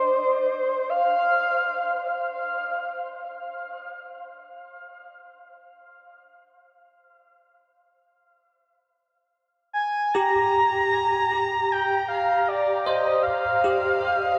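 Floating in free time with an unmeasured pulse, this ambient passage, cut from a longer piece, feels spacious and reflective. A breathy, flute-like synth lead carries the melody between C5 and Bb5, sitting up front with a soft attack, sustained tones, vibrato and a lush chorus. It sounds briefly at the opening, falls away at 2.4 seconds, and returns at 9.7 seconds. At 10.1 seconds a bell-like tine electric piano enters with bright, clean arpeggios between G4 and C5, set direct and close under an ensemble chorus as the harmony settles on Gmadd11. Both parts trail off into diffuse ambient delay, and the whole dreamy mix is soaked in a huge, lingering reverb.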